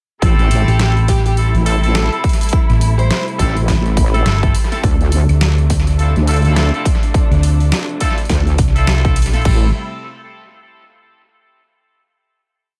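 Soaked in echo-heavy digital ambience, this gritty, funky glitch hop piece at 104 BPM in A minor swings over Am7 and Dm7, driven by a punchy electronic kick, a dubstep kit with a deep snare and a swung beat with edits, an up-front heavy wobble bass with changing wobble speed, and a round, dark hollow-body short-scale electric bass playing chopped phrases, while a brilliant horn section fires syncopated rootless stabs with tape echo, a veiled, muted string section holds a lush, distant pad, a smooth overdriven lead guitar adds short picked phrases in the background from 0.7 to 3.2 seconds, and the drop gives way to a final Am7 chord at 9.5 seconds.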